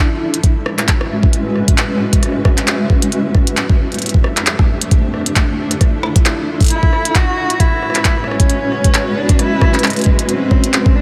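This IDM clip, cut from a longer piece, moves at 134 BPM in A major with a 56% swing on sixteenths and a glitchy, playful mood. A granular cloud pad holds sustained chords from the start through Amaj7, C#m7, Fmaj7 and Dmadd9. The pad is blurred, detuned and mellow, with a slow attack and long release, and its sound is shaped by built-in reverb, analog chorus and sidechain pumping. Up front, a gritty, pitched-up electronic kick thumps with a tape-toned, compressed character, while a produced electronic kit adds handclaps, clicky hi-hat and rim click; both drum parts were re-recorded in a small room. At 6.7 seconds a dark, woody cello enters, a single bowed player with vibrato who sounds distant and carries analog delay, playing a melody between G#3 and F#4. The mix is dreamy and soaked in a cathedral reverb with a 4.7-second decay.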